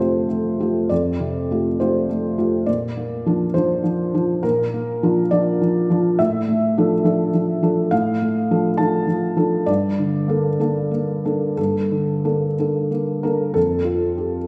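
A felt-muted upright piano plays alone through this short neoclassical minimalist passage, its hushed, mellow tone sitting intimate and up front. The mood is peaceful and tender, moving in a lilting 6/8 with a loose, rubato feel that lets the phrases breathe. The harmony drifts gently from Fadd9 through Bb, Dmadd9 over A and Gmadd9 before settling back on Fadd9 at 13.6 seconds. The piano spans from its low register up into a soft upper range, and its muffled attack gives every chord a close, private quality. A generous recital-hall reverb surrounds it, suggesting a church or concert space, and the fragment is cut from a longer piece, ending at 14.5 seconds.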